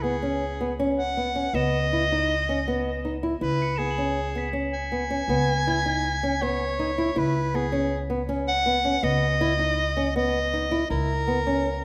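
Set in a straight 5/4 at 160 BPM, this pensive, hypnotic chamber piece, cut from a longer work, moves from C#7(no3) to Emaj9/C# as a fingerpicked flamenco guitar spins up-front arpeggios over the woody, thumpy pizzicato of a gut-strung upright bass. A breathy, whispered soprano saxophone carries the solo melody up front with vibrato and a soft attack, bright yet intimate in a pop style. Mellow, bell-like crotales played with hard rubber mallets shimmer in the background until 7.2 seconds, and a moderate scoring stage reverb gives the ensemble its space.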